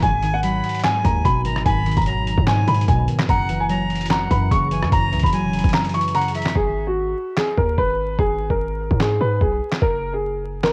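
A dark, mellow grand piano carries the melody through tape echo from the first moment, joined by a breathy, reedy jazz flute line, warbling, detuned lo-fi synth keys under chorus and cassette wear, a punchy 808-style bass, and a gritty, compressed boom bap sampler-style kit of thumpy kick, snare, rim click, hi-hat and handclaps. This brooding hip hop and trap piece moves at 147 BPM in a half-time feel over G#m7 and F#7, and the kick falls silent from 5.7 to 6.6 seconds. Around 6.6 seconds the flute and synth keys stop for a break, where piano, bass and drums carry on amid vinyl crackle and a home cassette sound with light reverb.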